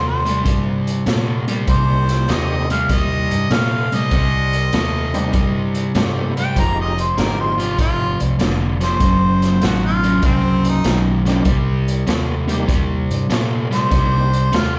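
A clear, soft-attacked harmonica carries a jazz-inflected solo across the whole 14.8 seconds of this excerpt from an electric blues shuffle in C minor, its tone roughened with overdrive and a slapback echo. Beneath it, an up-front overdriven semi-hollow guitar plays a picked riff with a hollow-body ring, while a dark, round, foam-muted fingered bass anchors the low end at a swung 98 BPM in 4/4. A raw garage drum kit enters at 0.3 seconds on hi-hat, boomy kick and medium-tuned snare, sounding gritty and saturated in a small, pumping room with its top rolled off. A full, clean tonewheel organ sits in the background from 1.7 to 7.6 seconds and again from 11.3 seconds, colored by slow rotary speaker, chorus vibrato and slapback echo. The harmony moves from Cm7 to Fm7, through F#dim7 and back to Cm7, and the mood is mournful and smoky, heard as a live gig through the venue's PA with club reverb.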